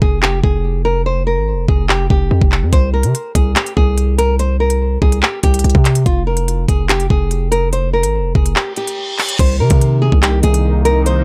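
Drill-style hip hop in C minor at 144 BPM with a half-time feel, menacing and tense, cut from a longer piece: a small, fingerpicked nylon-string guitar carries the melody through a low-pass filter and tape echo over a distorted, heavy 808-style bass with a fast attack and a noise layer, while an up-front electronic drum kit brings a knocking kick, crisp hi-hats, handclaps and crash cymbal. The kick drops out at 8.6 seconds as a reverse cymbal leads into the change at 9.4 seconds, where a detuned sawtooth pad with chorus, a slow attack and a resonant filter swell sustains a Cm7 chord. The mix is dry of reverb but echo-heavy, moving through Fmadd9 and C5 before that closing chord.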